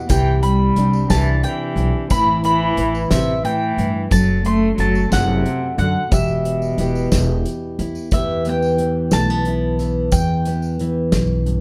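Reflective and melancholic, this short cut from a longer acoustic folk piece moves in a slow, straight 6/8 at 60 BPM in E minor, with chords passing from Cadd9 through Amadd9 and F#dim to Em. A picked mandolin carries the melody between E5 and C6, its double strings sounding woody and touched by plate reverb. Beneath it, a bowed cello played by one player sits up front with a nasal, reedy, gut-string tone in a period style, holding a second line until it drops out at 7.7 seconds. A dark, full-bodied fingerpicked dreadnought guitar, also up front, fills out the accompaniment, while a pizzicato upright bass adds a growly, thumpy low end. A loose indie drum kit with a medium-tuned snare, tight kick and hi-hat breathes in a small, pumping room, and a jingly, bright, band-limited vintage tambourine sits far back in the mix, all set in a moderate studio reverb as the piece moves into a new section at 8.1 seconds.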